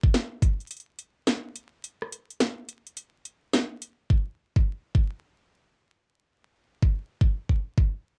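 Glitch hop at 106 BPM in 4/4 with a swung 16th-note feel, this swaggering, gritty excerpt sounds like a home cassette recording, with vinyl crackle, a light reverb and a dark, rolled-off top end. A layered drum and bass kit carries the opening half: a cracking snare, metallic hi-hats and rim clicks, muffled by low-pass filtering on the snare, hats and room, moving into a break with a band accent at 3.5 seconds. After a brief hit at the start, a knocking, tape-warm electronic kick returns alone and up front at 4.1 seconds.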